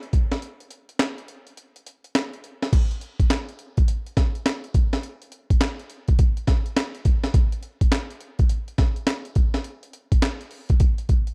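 A breakbeat drum kit with a sampler feel opens this bouncy, punchy R&B cut at 104 BPM in 4/4, with a 16th-note swing. Its thumpy kick, high-tuned snare, hi-hat, handclaps and crash cymbal sit up front, compressed and gritty with vintage 12-bit sampler grain. A break runs from 0.4 to 2.7 seconds before a new section takes over, all in a dry, close studio sound with a 1970s character.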